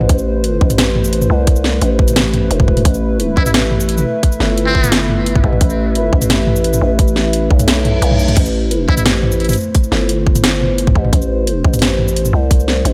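Cinematic and spacious, this half-time drum and bass cut at 174 BPM in A minor rests on a dark, detuned analog pad with chorus, 12-bit sampler grit and sidechain pumping, under a growling, buzzy 808-style bass, an overdriven kit with cracking snare and bright hats, and a tight, up-front electronic kick that drops out from 7.7 to 8.4 seconds beneath a reverse cymbal, while a thin, breathy trumpet with a metal mute adds scooped, jazz-style phrases through tape echo, first at 3.4 seconds.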